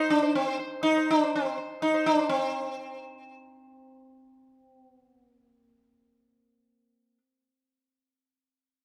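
Indian classical fragment, meditative and longing, at 122 BPM in a straight 7/4, where a solo acoustic sitar, plectrum-plucked and placed up front, carries a round, buzzing tone with shimmering sympathetic strings throughout its 7.2 seconds, shifting to a new passage at 2.3 seconds within the moderate reverb of a recital hall.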